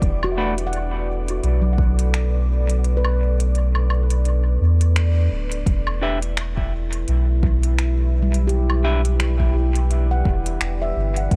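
A round, soft dub sub bass sits up front in this spacious, meditative ambient dub fragment, cut from a longer piece and moving at 85 BPM in 4/4 with a swung 16th feel in E minor. Around it, a mellow close-miked handpan rings out arpeggios with tape echo, while a deep, dark pad with chorus and a long, slow-breathing release holds sustained chords, shifting from Bm7/E to Em7. A layered, tape-warm electronic kick anchors the groove but drops out from 2.8 to 5.7 seconds, and a softer electronic kit adds finger snaps, smooth hi-hats and woodblock trailing off in dub echo. An airy, wind-like noise texture hovers in the background through the first half. The band hits a brief accent just before the chord change. After a single fleeting stab near the start, a clean, hollow-bodied electric guitar returns from 6.0 seconds with dark stabs roughened by vintage 12-bit sampler grit and dub echo, all set in a digital ambience.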